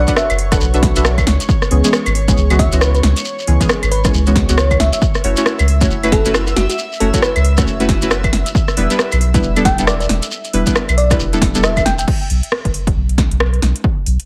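A round, up-front dub sub bass anchors this bouncy, soulful two-step UK garage excerpt at 136 BPM in B minor, joined by a punchy overdriven electronic kick and a house kit of cracking snare, metallic hi-hats, claves, rim clicks and crash, a grainy close shekere, deep mellow chorused chord stabs with digital delay, a sparkling, warbling FM electric piano melody, and an airy, breathy pad pumping softly in the background, until the electric piano, stabs, pad and shekere drop out at about 12 s and the bass and drums carry on alone to 14.3 s.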